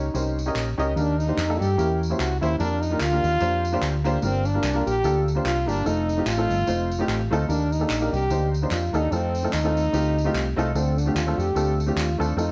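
Uptempo gospel at 147 BPM with a 4/4 swing, this jubilant, soulful excerpt from a longer piece sets a smooth-topped, classical-style French horn on the melody with plate reverb over a worn, woody, slightly detuned upright piano, a dark, round, punchy fingered electric bass up front, and compressed, saturated tambourine and group handclaps entering at 0.1 seconds, moving through chords from Eb7 and Edim7 to Bb6 and F7 in a light reverb.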